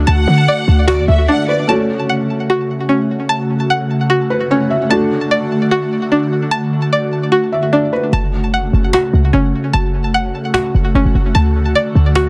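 A half-time trap groove at 149 BPM in 4/4 opens with a woody cajon and a punchy, tight 808-style bass, then drops into a brief silent gap at 1.3 seconds. This dark, hard-hitting hip hop fragment in F# minor is carried by an up-front airy, breathy pad with chorus and phaser, a twangy, bright resonator pluck playing arpeggios through chorus and delay, and a soft, felt-muted upright piano with audible action noise that accompanies until 8.1 seconds. A distant, lush violin section with vibrato and delay adds a short second line at the start, while the bass returns at 8.1 seconds and the cajon at 8.9 seconds over the F#m and D chords, all in a small room with a dense, heavily limited modern master.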